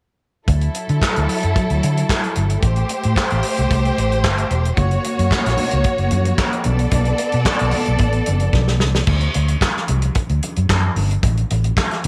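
A light reverb gives this short disco passage, cut from a longer piece, a polished, roomy sheen with a glamorous, driving mood and a straight 4/4 metre. A soul drum kit sits up front with a tight kick, a medium-tuned snare, handclaps, hi-hat and dark crash cymbals, its rolled-off top sounding as though captured in a small booth. Beside it, a vintage, foam-muted fingered electric bass plays round, dark, amped lines that anchor chords moving from Dadd9 through Am7, F# and Bm7. A lush studio string section carries the second line, its bowed ensemble sound full of vibrato, portamento and slapback echo, until it stops at 9.0 seconds. Bright, thin-skinned congas join softly in the background at 4.8 seconds, and a drum fill at 8.5 seconds leads into a closing stretch on D7 before the harmony drops away.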